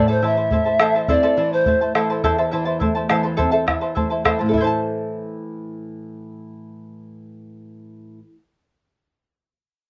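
Light reverb and an open, outdoor sound frame this short cut from a longer festive, earthy Andean folk piece, moving at a straight 104 BPM in 4/4 in A minor pentatonic, tuned slightly low with A4 at 437 Hz. A polished pan flute carries the melody with a pure, wooden tone, vibrato and a crisp attack with chiff, sitting distant and touched by slapback echo before it drops out at 2.5 seconds. Up front, a mellow fingerpicked charango shimmers on its double strings, some doubled at the octave, with its own slapback echo, while a dark, small-sounding fingerpicked nylon-string guitar plays alongside it. Just after the start, a round bombo joins, its compressed, saturated thump lasting until 4.8 seconds. The harmony opens on A minor, and a new section begins at 4.5 seconds as the charango and guitar play on to the close.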